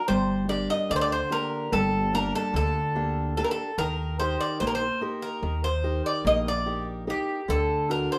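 Greek folk in a straight 9/8 with a reflective, wistful mood, this short passage from a longer piece is led by an up-front bouzouki whose picked double strings ring metallic, with some octave-doubled courses adding shimmer to the melody. Underneath, a fingerpicked steel-string acoustic guitar with fresh strings and the odd finger squeak supplies the accompaniment, while a pizzicato upright bass adds a woody foundation. The harmony moves from Gm to Eb at 3.8 seconds and onto D at 7.5 seconds, all set in a moderate studio reverb that surrounds the warm trio.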